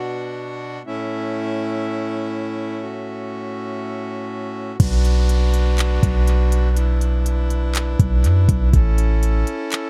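A half-time 4/4 groove at 122 BPM underpins this hazy, ethereal stretch of atmospheric cloud-rap in B minor, cut from a longer piece and tuned slightly below standard pitch. An accordion opens alone, holding reedy sustained chords from A2 to F#5 with a clear, boxy small-room character and sidechain pumping that makes its level breathe, moving between B minor and A. At 4.8 seconds the smooth R&B drum kit arrives with a soft kick, smooth hi-hats, handclaps and a crash cymbal, their electronic, produced sound sitting beside a deep, boomy 808-style bass that holds the low end from A1 to F#2. That bass sits up front, with a mellow sine tone, a fast attack and a decaying tail. An electronic downlifter drifts in the background from 4.8 to 8.7 seconds, while a digital, echo-heavy ambience bathes the whole mix in a dreamy haze as the chords return to B minor and then A.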